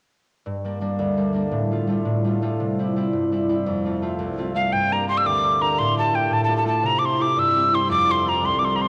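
A home cassette recording bathed in a lush hall reverb carries this dark, lively and driving Celtic folk fragment in 6/8, where a bright, ringing, fingerpicked concert harp sits up front with the chords from 0.5 s onward, joined at 4.6 s by a breathy metal whistle, vibrato-laden with a crisp, chiffing attack, that steps forward to take the melody.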